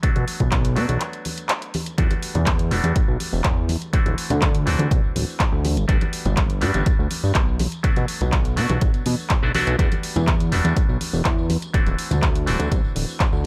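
A joyful, sunny slice of filtered disco house, this short excerpt cut from a longer piece moves in a straight 4/4 pulse over a progression of Bm7, Em11, D9 and Gmaj9. A punchy analog kick sits up front. A layered house kit adds handclaps and bright hi-hats that pump with sidechain. Tambourine and congas sit close and dry in the background, also pumping and low-pass filtered. A fat, detuned analog bass with a sawtooth bite and wave-folded edge carries the low end, sustained and up front, with a filter sweep and its own pumping. A twangy, nasal clav through a combo amp plays the accompaniment with phaser, 12-bit sampler grit, sidechain pumping and a low-pass filter, and a brief break arrives between 1.0 and 2.0 seconds in a dry, close mix.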